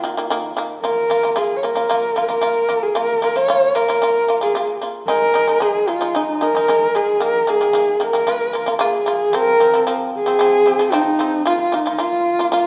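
A husky horsehead fiddle carries the melody up front, bowed by a single player with vibrato and expressive portamento, its tone dark beneath a smooth top. Beneath it, a bright, buzzing fretless shamisen, plucked with a plectrum, sounds percussive arpeggios, also up front. This windswept, solemn passage of Mongolian folk music is cut from a longer piece and sits in a wet recital-hall reverb, with a new section arriving at 9.3 seconds.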